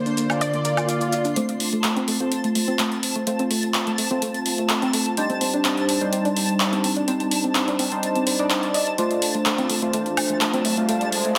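Up-front chorused polysynth stabs, glossy and retro with a filter sweep and delay, drive this expansive progressive house excerpt at 126 BPM, joined by a big-room dance drum kit of handclaps, metallic hats and woodblock, plus soft round pluck arpeggios bathed in lush chorus. A punchy unison pluck melody and a smooth supersaw second line open the piece alongside grainy maracas and a background swell, while a twinkling granular texture shimmers above throughout. From 1.5 seconds a saturated sub bass sits barely audible beneath a build-up over chords moving from F to Cmadd9 to Dm7, with a riser arriving at 9.8 seconds, all carrying a heavily compressed, radio-like sound.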